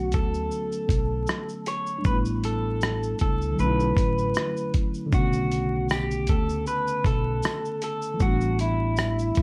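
A slightly broken-up electric guitar carries the melody up front in this reflective, melancholic lo-fi hip hop fragment, its picked, compressed tone colored by spring reverb and a low-pass filter. Beneath it, a worn, slightly out-of-tune tine electric piano plays mellow, filtered chords, moving from Bm9 through A7sus4 and Bm11 before the progression returns. A woody pizzicato upright bass with gut strings supplies a dark, thumpy low end. The dusty sampler-style drum kit sits up front in the mix, its gritty 12-bit character, thumpy kick, hi-hat, rim click and shaker falling into a lightly swung sixteenth-note feel. A jingly, very quiet tambourine joins at 5.9 seconds, while light reverb and a layer of vinyl crackle give the whole fragment a nostalgic, lived-in haze.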